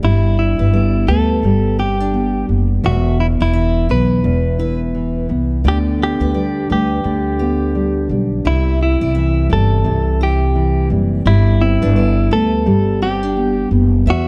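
A dark, warm mix with light reverb frames this carefree, heartfelt acoustic pop excerpt with a gentle swing, where a clean, compressed electric guitar recorded direct picks the melody over fingerpicked classical nylon-string accompaniment with audible finger squeak, a full-bodied steel-string acoustic with fresh strings arpeggiating in the background, and a woody, growly pizzicato upright bass sitting up front.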